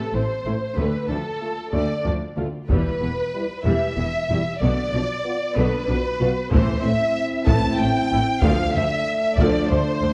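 A slow, straight-felt 6/8 pulse carries this dark, heroic cinematic excerpt from a larger orchestral film score, built on a brooding minor progression. Two violin sections play from the start: one carries the lush, expressive melody with vibrato and portamento, while a second, richer and closer section adds a soft-attacked second line. Close, soft-attacked violas fill the middle with accompaniment, and beneath them woody, shadowy cellos sit distant in the background beside a smooth, even double bass section. A mellow French horn section enters at 0.5 seconds with sustained chords in a classical style, and at 2.7 seconds a distant taiko ensemble joins, struck with heavy sticks in a large room. The whole recording sits in moderate scoring-stage reverb and carries the worn, warbling pitch drift of old cassette tape.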